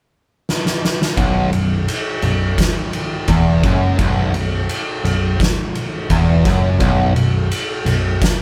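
Recorded live in one room with light reverb, this sludgy, brooding stoner and doom metal passage moves at 85 BPM in a straight 4/4 and is cut from a longer piece. An oversized, low-tuned drum kit with a boomy kick, fat snare and dark ride cymbal opens with a fill at 0.5 seconds, sounding gritty and up front in a pumping room. At 1.2 seconds a double-tracked, compressed fuzz guitar riff on a B5 chord arrives together with a growly, punchy overdriven picked bass carrying tube saturation, while the drums continue until 8.4 seconds.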